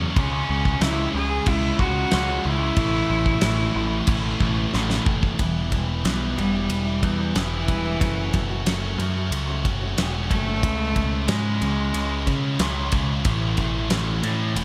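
Quiet-loud alternative rock with a dark, cathartic mood, built on riffs from a bright high-gain guitar, a dark fuzz guitar set in the background and a very quiet double-tracked overdriven guitar, over a growling, up-front picked bass and a big-room acoustic drum kit with a fat snare, punchy kick and rolled-off top. A distant, earthy cello carries the melody with light vibrato and a nasal edge, and after a drum fill it takes a solo from 5.4 seconds, when the crunchy guitar stops and the fuzz guitar drops out. A picked steel-string acoustic guitar with fresh strings plays delayed arpeggios in an auditorium-like space until 10.6 seconds, when the fuzz guitar returns.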